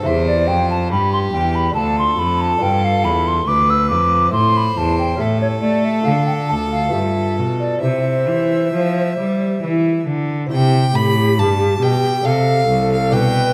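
Serene and dance-like, this baroque-style classical sonata movement in C major, cut from a longer piece, moves at 69 BPM in 3/4, with a clear, smoothly bowed violin carrying the melody above a hollow, airy concert flute second line with crisp attack and vibrato, a focused, up-front cello bass, and a delicate, fingerpicked gut-strung lute sitting in the background, set in a dark, warm production with wet recital hall reverb.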